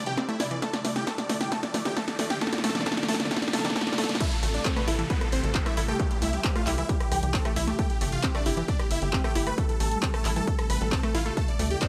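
This bittersweet, driving uplifting trance at 134 BPM in A minor opens on a build-up, with huge, detuned supersaw chords carrying the melody through a phaser and tape echo, a bright unison pluck tracing arpeggios in the background, a nasal sawtooth sequencer bass, a heavy, layered electronic kick up front, and a riser rising beneath a drum fill from a punchy analog drum machine. At 4.2 seconds the drop arrives, with the drum machine's snare, claps and hi-hat sitting in a short room alongside its rim click and crash, and sidechain pumping on the chords, pluck and bass, all moving through Am7, C and Gsus2 under light reverb. This is a cut from a longer piece.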